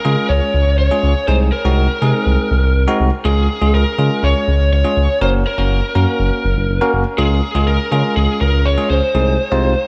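A dreamy, reverb-soaked mix frames this bright, wistful synth-pop fragment, where a lo-fi overdriven lead guitar through a small cranked amp carries the melody with tape echo over a clean, bell-like tine electric piano and a smooth, mellow synth bass with ring modulation and vibrato sitting up front, all moving through chords from Db6 to Gb and back toward Ab/C.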